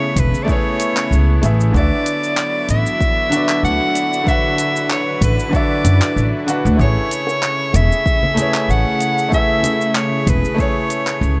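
A sunny, relaxed sunset chillout passage in A major opens with a breathy soprano saxophone carrying the melody up front, its whispered tone, soft attack, light vibrato and scooped notes given a trail of delay. Beside it, a bright grand piano accompanies with a brilliant, long-sustaining tone, its action noise audible and a digital delay on its sound, while a distant studio string section holds soft, floating chords played sul tasto. A moment later, a woody, growly pizzicato upright bass arrives up front with a thumpy presence, joined by a deep electronic kick and a tape-toned deep house kit of handclaps, hi-hat and shaker, all at an easy 95 BPM with a light 16th-note swing. The harmony moves from Amaj7 to D69 and back to Amaj7. At 7.3 seconds, soft-handed bongos and congas add a gentle acoustic patter in the background, and the music begins fading out at 10.2 seconds within light small-room reverb, cut from a longer piece.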